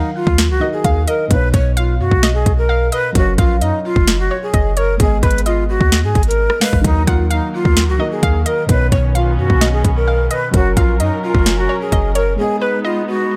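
Menacing and eerie, this half-time trap and hip hop passage moves at 130 BPM in Eb minor, cut from a longer piece and set in a small, dark room ambience. A breathy jazz flute carries the melody up front, its hollow, distant tone touched with vibrato and tongued notes, while a soft round pluck traces a second line above it through chorus, phaser and delay, with a ring-modulated edge and a filter sweep. A felt-muted upright piano supplies intimate accompaniment, its thick felt and audible action noise adding a hushed texture. Underneath, a clean, boomy 808-style bass with a sine body anchors the low end, and a trap kit of hard-clipped kick, sharp snare, crisp hats and rim click sits prominently in the mix from 0.3 seconds. Veiled, con sordino strings enter at 6.8 seconds with bowed sustained chords as the progression of Ebm, Badd9, Gb and Abm repeats, and the drums and bass drop out by 12.4 seconds for a brief break.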